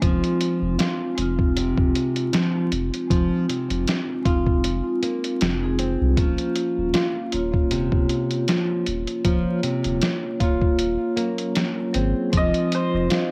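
A gritty, compressed sampler-style drum kit sets a slow 78 BPM trip hop groove in 4/4 with a light 16th-note swing, its thumpy kick and medium-tuned snare up front, while a round sine sub bass holds the low end under chords moving from Fm7 to Ebm7 in F phrygian. A metallic, ringing vibraphone with tremolo and a fingerpicked nylon-string guitar playing arpeggios through tape echo fill out this smoky, cinematic excerpt, which has the feel of a home cassette recording with vinyl crackle and small room reverb. At 12.4 s a bright, shimmering hammered santur enters up front with a brief melody, also treated with tape echo.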